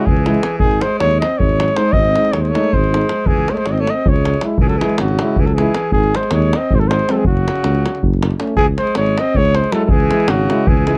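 A dry, close 1970s-style studio recording with light reverb carries this restless, fiery Balkan brass band piece in 7/8, where an up-front flugelhorn with light vibrato and a soft attack leads the melody in a jazz style, a distant, roomy alto saxophone with vibrato adds a second line, a clear French horn with vibrato and a background euphonium with light vibrato give classical-style accompaniment, a mellow tuba holds the bass up front, and a deep, acoustic davul in a small room drives the percussion from 0.1 s.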